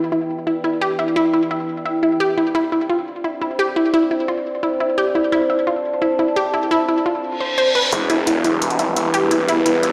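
Set in a moderate, lush hall reverb and heard through a big system in a bare room, this aggressive, futuristic dark technical drum and bass fragment opens with a moody, chorus-and-phaser analog pad holding sustained chords under a round, up-front analog pluck spinning delayed arpeggios, while a filter sweep runs across the pad, an electronic reverse cymbal and riser enter at 7.4 seconds, and at 7.9 seconds a snarling, growling distorted saw bass and bright electronic hi-hats arrive to launch the build-up.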